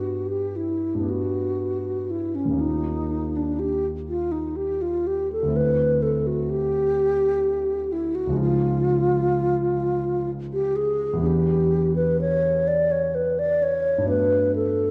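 Heard through a worn, warbly cassette with pitch drift and a wet recital-hall reverb, this dreamy, pastoral impressionist classical duo unfolds in 6/8 with an uneven, rubato pulse. A close-miked alto flute, airy and hollow with tongued notes and vibrato, carries the melody up front. A dark concert grand supports it with deep bass and long sustain through lush chords drifting from Gmaj7 through Ebadd9 and C#add9 before settling on Gmaj9.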